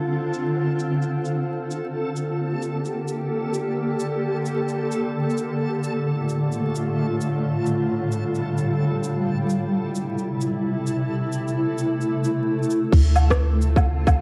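A worn home-cassette sound with vinyl crackle and a wet room ambience frames this melancholic, ghostly future garage fragment at 131 BPM in D minor with a swung 16th feel, where a blurred, detuned granular cloud pad carries pumping sustained chords from Dm7 through Bb6 and F6/A to C, a reversed, bright swelling texture hovers high above it until 12.9 s, a low-pass filtered organic electronic kit of crash cymbal, rim click, shaker and woodblock sits back in the mix, and at 12.9 s a tight, up-front kick and a round, deep 808-style bass arrive together on the return to Dm7.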